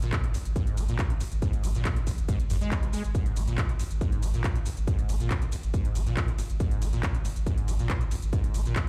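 Dark and industrial, this driving peak-time techno runs at 139 BPM in a straight 4/4, centred on G# minor, in a short piece cut from a longer track. A heavy electronic kick sits up front from 0.1 seconds, layered and touched with small room ambience, the loudest part of the mix. Beneath it, a saturated sub bass holds a deep, thick G#1 with a fast attack and long sustain, shaped by overdrive, a low-pass filter and sidechain pumping. A squelchy, resonant sawtooth acid bass carries the riff between G#1 and B3, with filter sweeps, decaying notes, ensemble chorus, dub echo and sidechain pumping. A quieter techno kit of handclaps, smooth hi-hats, ride cymbal and shaker fills in the groove, with sidechain pumping on the hats, cymbals and percussion, and the whole sound carries the boom of a big system played in a bare room, wrapped in large studio reverb.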